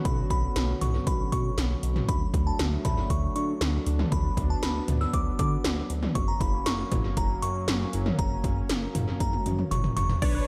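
Gated, punchy 80s electronic drums sit up front in this melancholic, driving synth-pop excerpt at 118 BPM, their overdriven snare and toms bathed in gated reverb with metallic hats and a drum fill from 9.2 to 10.2 seconds. A glassy, warbling FM synth bell carries the high melody over a shimmering chorused pulse-width pad and a dark, glossy chorused synth bass, moving through Bmadd9, D and F# in an echo-heavy mix. At 10.2 seconds a bold, fat analog synth brass and a squelchy, resonant blip pluck with phaser arpeggios slip in just as the passage cuts off.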